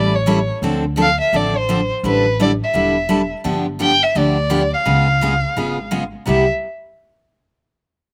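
A swinging 170 BPM pulse in 4/4 drives this charming C major string swing excerpt, where an up-front bowed violin sings a smooth, vibrato-laden melody with expressive portamento over bright, full-bodied picked steel-string guitar and a woody, thumpy pizzicato upright bass on gut strings, all heard dry outdoors as the chords move from Dm7 through G7 and Db7 to Cmaj7.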